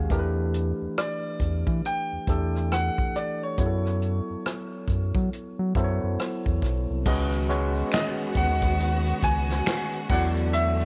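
Soulful and introspective, this slow neo-soul and R&B excerpt at 69 BPM swings gently in 4/4 as a barky, lightly overdriven tine electric piano with lush chorus and a round, deep analog bass with transformer saturation sit up front beside an unplugged drum kit of punchy kick, medium-tuned snare, rim click, hi-hat, finger snaps and dark crash played with bundle sticks, while a clear concert grand piano carries the high melody from 1.0 seconds and, at 7.1 seconds, bowed studio strings with vibrato and portamento add smooth sustained chords and background maracas and finger snaps join, all in a small, intimate room.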